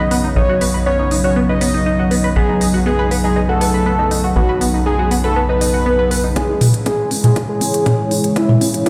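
Heard through a big sound system in a bare stone room, this driving, cinematic melodic techno excerpt at 120 BPM moves from B to C#m, its synths pumping with sidechain. A fat, nasal sawtooth lead with chorus, vibrato and dub echo carries the melody over a moody, detuned pad, a tight, wave-folded arpeggio with phaser and digital delay, a ring-modulated sequencer bass on B1 that stops at 6.3 seconds, and a tense, string-like drone in the background. Up front, a deep house kit of smooth hi-hats and toms drives the groove, and at 6.4 seconds a punchy electronic kick enters as the build-up begins and a filter sweep starts on the lead.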